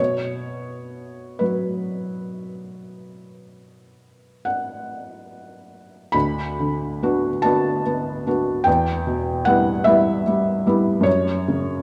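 A wet concert-hall reverb of 1.7 seconds surrounds this dark, warm short cut from a longer romantic nocturne in B minor, taken in 12/8 with free rubato at 34-51 BPM in dotted quarters. The solo felt-muted upright piano sits up front, soft and intimate, with short sustain and audible action noise, spanning D2 to B5 in a yearning, mournful mood. Opening on a B5 chord, the harmony moves to Bm/D at 6.1 seconds and then Em before coming to rest on F#5 at 11.1 seconds.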